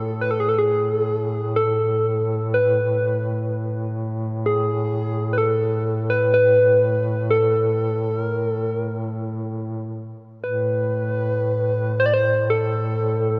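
Longing and solemn, this brief cut from a longer Caucasian folk lament drifts in a rubato 3/4 at about 56-64 BPM, with a soft struck synth lead carrying the melody in a round, warbling, vintage FM tone brightened by chorus, over a mellow duduk drone on A2 with vibrato and a smooth top, both up front in a wet church reverb, before a new section begins at 10.4 seconds.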